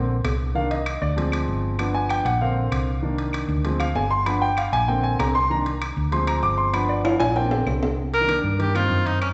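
Fiery yet sophisticated, this short cut from a longer Afro-Cuban jazz piece moves at a brisk straight four, built on a cycling progression that keeps circling back to a Bbadd9 before settling on a Cm9. A warm grand piano takes the spotlight up front from the opening, playing a solo passage until 8.0 seconds while a dark, round, hollow-body electric bass sits close beside it, fingered and amped. Ringing metal-shell timbales and woody claves, the latter close and dry in the background, join at 0.2 seconds, and a drum fill arrives in the second before the new section. At 8.1 seconds a clear cor anglais steps forward as the solo melody, close-miked and classical in style, with vibrato. The whole sits in a wet recital hall reverb with a church or concert-hall character, its top end softly rolled off.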